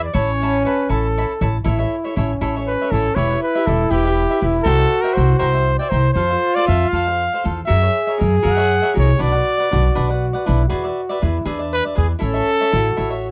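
Romantic and proud, this short mariachi passage in 6/8 sets a clear, classical-style trumpet melody with light vibrato up front over a darker, soft-attacked second trumpet, crisp picked cavaquinho accompaniment and a woody, thumpy pizzicato upright bass on gut strings, all in a dry, close 1970s-style studio sound as the harmony moves from Aadd9 through Em, C7 and F#7 before settling back on A at 12.2 seconds.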